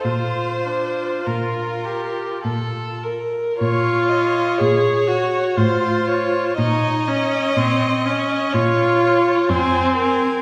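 In a slow 3/4 with a rubato feel, moving between 48 and 63 BPM, this lyrical, warm classical movement for string quartet unfolds as a romantic excerpt cut from a longer piece. It opens in Bb major and darkens into Bb minor at 3.6 s, passing through F/A and back to Bb minor before settling on F minor at 9.5 s. The first violin carries the melody with vibrato and expressive portamento, its rich tone sounding somewhat distant, while the second violin shapes a focused, smooth-topped second line beneath it. The viola, placed up front and the loudest of the four, supplies an even, vibrato-laden accompaniment of rich, smooth color. The dark cello anchors the bass with smooth, steady bowing until 10.3 s, and a reverberant recital-hall acoustic with a 1.8 s decay surrounds the ensemble.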